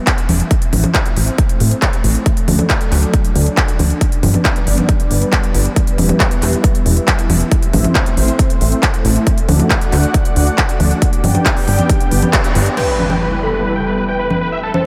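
A lush, warbling unison pad opens this euphoric, emotional uplifting trance passage in E minor at 137 BPM, its vintage sampler grit, chorus and filter sweep pumping against an overdriven, punchy kick and a crisp big-room kit of hi-hats, handclaps, congas and crash, while a plucky, funky analog bass rides the Em–Am–D–G cycle. After a band accent at 12.3 seconds, an electronic impact lands at 12.8 seconds as a huge, bright supersaw lead arrives through a low-pass filter, joined by a velvety synth line carrying chorus, vibrato and analog delay. The whole dreamy mix is soaked in a cathedral-like reverb.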